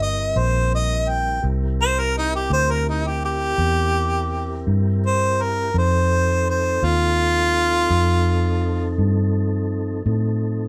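A slow 12/8 blues at 56 beats per minute, counted in dotted quarters with a straight feel, sets a laid-back, soulful mood in this short excerpt from a longer piece. A close-miked harmonica takes the lead with a jazz-styled solo, its warm tone shaded by light vibrato and sitting up front until it stops at 9.0 seconds. Beneath it, a muted fingered electric bass gives a dark, round, amped foundation, also placed up front. A soft tonewheel organ holds flute-like sustained chords further back, its clean voice carrying a touch of key click and turning through a slow rotary speaker. The harmony moves from C7 to F7 at 5.7 seconds, and the organ and bass carry on to the close at 10.7 seconds, all captured as a band playing live in one room with moderate studio reverb.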